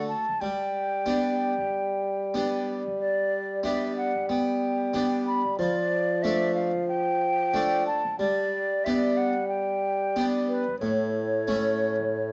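A straight, steady 4/4 pulse at 92 BPM carries this courtly, festive renaissance-style consort dance, a short passage cut from a longer classical piece. A silver concert flute takes the melody between B4 and B5 with an airy, hollow, straight tone and a crisp attack, its metal body sitting up front. Beneath it, a close-miked Italian-style harpsichord with three sets of strings supplies plucked, brilliant accompaniment from A2 to A4, its sound dry and full. A mellow bassoon anchors the bass between A2 and G3, adding a light vibrato in a classical manner. All three parts play together throughout the 12.3 seconds, moving through G, Dm/F, back to G and then to A. Light reverb and a dark, warm production frame the trio, keeping the top end soft.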